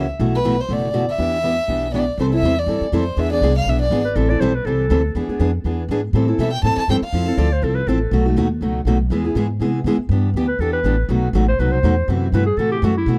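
A lightly swung 4/4 at 242 BPM drives this fiery, virtuosic slice of gypsy jazz in A minor, with a picked steel-string acoustic guitar supplying accompaniment alongside a woody, thumpy pizzicato upright bass on gut strings, both up front throughout. A warm, intimate bowed violin with light vibrato and an airy sul tasto tone carries the melody at the start, trading space with a clear, punchy clarinet colored by tape echo. The key shifts to E minor at 10.1 s, where the clarinet takes a forceful, vintage-toned solo to the end, all captured in a dry, close 1970s-style studio sound with a small room ambience.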